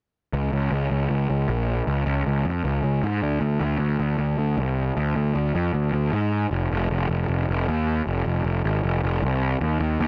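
Punk in F minor at 155 BPM, this aggressive, raw clip is cut from a longer piece and tuned slightly flat to A4 = 439 Hz. A fuzz-laden picked electric bass plays alone from 0.3 to 10.1 seconds, staying between F1 and Ab2 with a round, punchy, overdriven tone. It sits up front in a dry, direct sound with little reverb.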